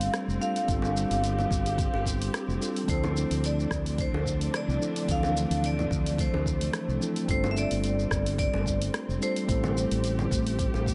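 Soft digital ambience rounds off the top of the sound in this short cut from a longer sunset chillout piece, which carries a wistful, warm mood over a gently swung groove. A vibraphone played with medium hard mallets carries the melody in a metallic, ringing voice with a medium motor vibrato, while a mellow tine electric piano supplies clean, direct accompaniment; both parts are touched with digital delay. Behind them a distant studio string section holds bowed chords with vibrato, soft attacks and expressive portamento, and a dark, round fretless electric bass sits beneath with a punchy, amped tone. A layered, produced deep house kit of congas, hi-hat, rim click and shaker runs throughout, joined at 0.7 seconds by a deep electronic kick and at 0.8 seconds by tight, high-tuned bongos struck with hard hands far back in a large room. The harmony moves from G7sus4 to Dm9 and back before settling on Am7.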